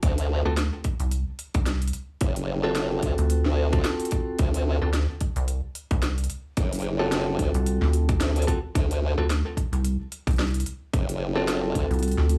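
A saturated, formant-filtered wobble bass with chorus opens this swaggering, funky glitch hop excerpt at 110 BPM in 4/4, alongside a tight, up-front electronic kick and a layered kit of cracking snare and crisp hats, all riding a 16th-note swing over a single D7#9 chord. From 0.5 seconds a rubbery, hollow square-wave bass bounces in with a resonant filter pluck and moving notch, while bright, scooped clean electric guitar stabs arrive coated in 12-bit sampler grit, sidechain pumping and digital delay. The dry mix carries vinyl crackle and a small room ambience until the guitar, square bass and drum kit ring out to 12.4 seconds.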